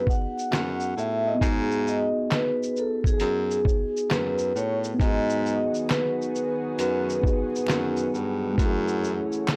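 A breathy baritone saxophone carries the bass line up front, its whispered, scooped notes and gentle vibrato lending this reflective, hazy lo-fi hip hop excerpt an intimate, jazz-style glow, with a touch of transformer saturation. Above it, a vibraphone played with medium mallets sings the melody in a metallic, ringing voice with slow motor vibrato, while a mellow tine electric piano, clean and heard as if through its built-in speakers, supplies the accompaniment; both are softened by a low-pass filter. A compressed, pitched-down sampler-style drum kit with a thumpy kick, medium-tuned snare, hi-hat, shaker and handclaps sits muffled but up front at a relaxed 67 BPM in 4/4, swung on the sixteenths. At 5.0 seconds a lush, thick unison pad of detuned sawtooth and square waves fades in slowly behind the band with chorus, and a close, dry finger snap joins quietly in the background at 5.9 seconds. 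Set in G# phrygian, the harmony rests on G#m7 before moving to F#m7 at 8.6 seconds, all framed by light reverb, gritty hardware grain and vinyl crackle.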